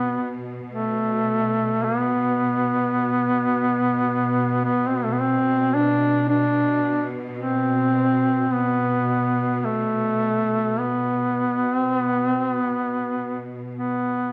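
A warm, up-front duduk sings a longing, mournful Caucasian folk lament with vibrato and scooped notes over a low, lush bowed drone from a clear, biting symphonic string section, moving in a slow rubato around 49-55 BPM in B phrygian, all within the 14.3 seconds of this fragment cut from a longer piece and set in a moderate recital-hall reverb.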